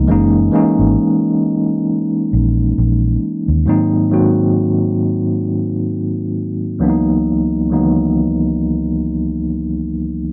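A clean tine electric piano sits up front through a combo amp, its medium tremolo and low-pass filter shaped by a filter sweep across the whole 10.3 seconds as it voices a rootless F#9, then G#9 and C#m11 in C# dorian. This is a late-night, introspective R&B and neo-soul fragment at 67 BPM in 4/4 with a light 16th-note swing, tuned to A4 = 439 Hz. A dark, round and punchy foam-muted fingered electric bass plays only until 3.6 seconds, all captured in a dry, close 1970s-style studio sound with light reverb.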